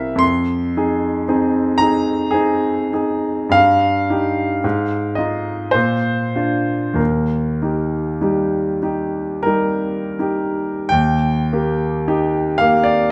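Serene and dreamy, this romantic classical nocturne for solo piano unfolds in triple metre with a freely breathing rubato feel. A concert grand, clear and natural with a deep bass, sits up front and ranges from its low register to high melodic lines, moving through harmonies that settle onto the home chord at 7.0 seconds. A moderate recital-hall reverb surrounds the instrument, and the opening section returns at 10.9 seconds before this excerpt from a longer piece cuts off.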